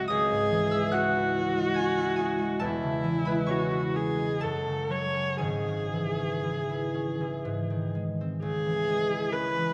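A warm, bowed viola carries an elegiac, yearning melody up front, its single expressive voice shaded with vibrato and portamento. A bright concert harp, fingerpicked and ringing, accompanies it throughout this romantic classical duo in a flexible, rubato three-time feel, with a new section arriving at 8.4 seconds. Both instruments sit in a wet concert hall reverb, and the passage is cut from a longer piece.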